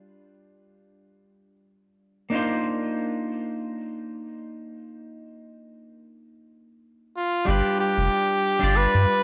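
A bright, twangy clean electric guitar opens this wistful sunset chillout excerpt at 93 BPM in C minor, moving from G7 to Cm11 over a gently swung 4/4 feel, before a clear flugelhorn enters at 7.2 s with a light-vibrato pop-style solo and a deep, nasal round analog bass with tube saturation arrives at 7.5 s, all bathed in a concert hall reverb and the warbly pitch drift of worn cassette tape.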